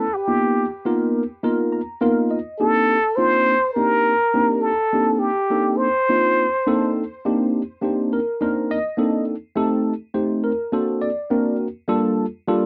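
A plunger-muted trumpet, breathy and whispered with wah-wah and vibrato, sings an intimate melody up front over a worn, slightly out-of-tune tine electric piano through a combo amp with analog chorus, which adds a fill at 1.4 seconds and carries on alone after the trumpet drops out at 6.9 seconds, in this intense, funky swung jazz fragment at 103 BPM in C dorian, captured in a dry, close 1970s-style studio with light reverb.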